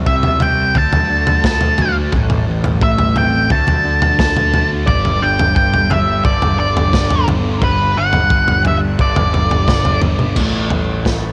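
Psychedelic rock with a hypnotic, mysterious mood, this excerpt moves at 87 BPM in a straight 4/4 over C5, D, Am and Gadd9 chords, with a double-tracked, thick fuzz guitar riff run through phaser and a round, overdriven fuzz bass picked underneath. An up-front, octave-fuzz lead guitar carries the melody with tape echo, while a crunchy, saturated breakbeat kit with dark cymbals, a tight kick, snare, toms and crash drives the groove. Very quiet, damped, low-tuned congas with hard hands sit beneath it all in a small room, and the chords drop away at 10.4 seconds.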